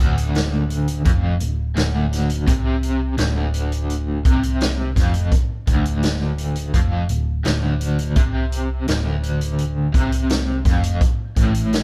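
In a straight, steady 4/4, this short cut from a longer psychedelic rock piece sets a dark, hypnotic mood as a band plays live together in one room with light reverb. An overdriven semi-hollow guitar, bright and double-tracked, sits up front with a low riff treated with tremolo. A hollow-body short-scale picked bass, round and amped with a dark tone, holds down the low end beneath it. A vintage acoustic kit enters at 0.2 seconds, its punchy kick, medium-tuned snare and hi-hat sounding natural and up front, with a rolled-off top. The harmony rests on D minor until an A power chord arrives at 11.0 seconds, just before the clip ends at 11.8 seconds.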